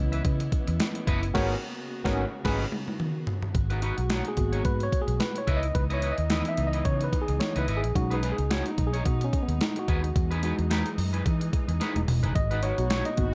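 Slick, late-night early-eighties boogie funk opens on a tine electric piano, bowed strings held softly in the background and a round, foam-muted fingered bass up front, joined at once by a thumpy, tape-warm 12-bit drum machine and a twangy, slightly broken-up guitar riff with lush chorus, while a detuned sawtooth synth brass line with phaser comes in with a band accent at 1.3 seconds before the electric piano takes a clean solo from 3.5 seconds over a dark, ambient production.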